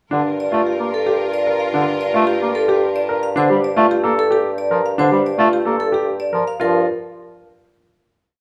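This short, complete piece of minimalist classical pattern music in G minor, in 3/4 at 111 BPM, opens with a clear, up-front bass clarinet and grand piano each cycling a repeated short cell. Alongside them a mellow, distant bassoon holds long bass notes on G, and a symphonic string section adds intense, bowed swelling held notes with light vibrato and a smooth top. At 0.4 s a vibraphone with medium hard mallets takes the melody, its metallic, ringing tone carrying a fast motor vibrato and a boxy small-room colour of its own. The strings fall away at 3.2 s, leaving the clear, vintage-toned clarinet, piano arpeggios, bassoon and vibraphone to keep the urgent yet meditative pulse over a Gm7 harmony. At 6.6 s the piece settles onto a final G7 chord with its third omitted, and the whole ensemble sits in a moderate recital hall reverb.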